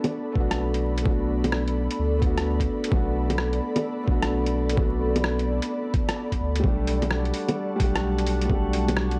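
A muffled, overdriven, pitched-down electronic kick thumps in at 0.4 s alongside a round, deep sine sub bass in this melancholic, rainy future garage piece at 129 BPM in B minor with swung 16ths, where the sub bass, a soft, felt-muted upright piano with tape echo and an ethereal, detuned pad with ensemble chorus all pump to the sidechain over Bm7 shifting to Dsus4/B, overdriven sampler-style bongos, hi-hat and rim click sit up front, and a glassy texture of drifting overtones slips into the background at 7.1 s, on a dry, gritty hardware recording dusted with vinyl crackle.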